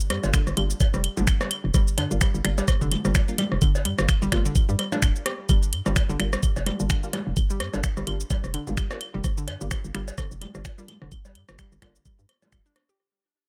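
Sparse and cool, this minimal techno passage, cut from a longer piece, sits in a swung 4/4 drop over a single Gm7 chord and begins fading out at 5.5 seconds. An up-front, layered electronic kick with a knocking, tape-warm character anchors the groove, joined by a garage drum kit of cabasa, finger snaps and metallic hi-hats in a small room reverb. Electronic rim click, claves, cowbell and congas add a produced percussion layer, re-recorded in a small room. A punchy FM bass with a fast attack bounces up front, pumping against the kick. A hollow, detuned square-wave pluck carries the riff with chorus, phaser, sidechain pumping and dub echo. In the background, a dark, muted sawtooth chord stab evolves through a moving notch filter, phaser, ensemble chorus and delay, all set within a digital ambience.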